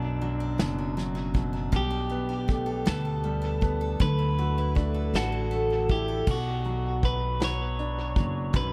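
In a slow, straight six-eight pulse at 53 BPM in B minor, this melancholic, dramatic pop ballad fragment sets a twangy, slightly broken-up electric guitar melody with tape echo over a clear baby grand piano with audible action noise, bright picked acoustic guitar arpeggios that stop at 6.4 s, woody pizzicato upright bass and a dark, up-front brushed drum kit entering at 0.2 s, all in an echo-heavy studio reverb as the chords move from Bmadd9 through Gadd9/B and Dadd9 before returning to Bmadd9 at 6.3 s.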